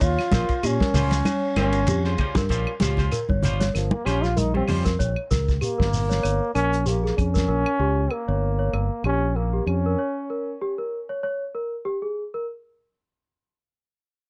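Afrobeat at 96 BPM in Bb dorian, this defiant, driving cut from a longer piece swings its sixteenths as a clear, vintage trombone solos up front through tape echo, with a delicate, bell-like celesta arpeggiating above it and a punchy fingered electric bass anchoring the groove. A tight soul drum kit with a fat snare and dark cymbals throws in a fill at 1.3 seconds, while bright, dry congas and clean semi-hollow guitar stabs drop out at 4.9 seconds. A grainy, saturated shekere and woody claves fill out the percussion as the harmony moves from Bbm69 to Bbm6 in a light reverb with a softened top end.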